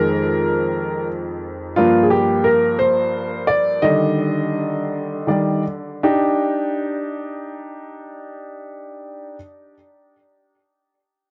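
This home cassette recording has a close, intimate feel, set in a small booth with moderate ambience and a short decay. A bright upright piano plays alone, up front, with a woody tone, audible action noise, long sustain, and the hazy colour of cassette tape and tape echo. The pop piece is heartfelt and swaying, in Eb major and a straight 6/8 felt at 52-60 BPM in dotted quarters. The chords move from Fm7 to Gm7 and then settle on Ebmaj7, with the tempo slowing from 1.8 to 6.0 seconds, where a new section begins. The piano spans F2 to Eb5 and rings until 9.4 seconds, in a passage cut from a longer piece.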